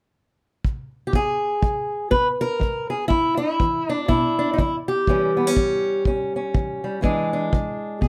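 A lightly swung, strutting groove in four drives this soulful, swaggering acoustic country blues, cut from a longer piece, with a tight, small-room kick drum entering at 0.6 seconds. At 1.1 seconds a boxy, parlour-sized fingerpicked steel-string guitar steps up front to carry the melody, moving from E to A7 and then E7. Moderate studio reverb gives the pair a modest sense of space.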